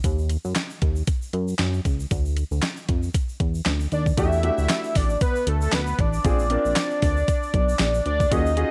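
A chorused, glossy synth bass and a crisp, overdriven 8-bit drum machine with a thumpy kick, handclaps and hi-hat open this slick, danceable early-eighties boogie funk excerpt at 116 BPM with swung sixteenths, a grainy shaker sitting distant in the background, before a fat, detuned analog lead with phaser and vibrato takes the melody at 3.9 seconds and an intimate grand piano with audible action noise joins at 4.2 seconds over chords moving from D#m7 through Em11 to A#.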